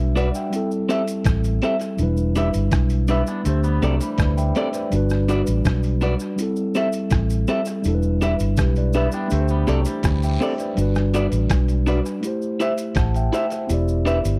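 A dry, close 1970s-style studio sound frames this romantic, sweet lovers rock reggae excerpt in G major at 82 BPM, where a mellow tine electric piano and a dark, foam-muted, round fingered bass sit up front alongside slightly broken-up guitar stabs from a small old amp with spring reverb, a gritty, pitched-down trip hop sampler-style kit with a thumpy overdriven kick, hi-hat and rim click, faint cabasa and guiro through tape echo, and a twangy, scooped guitar playing arpeggios from 3.1 to 10.7 seconds over chords moving from Gmaj7 through Am7, Em7 and D7sus4.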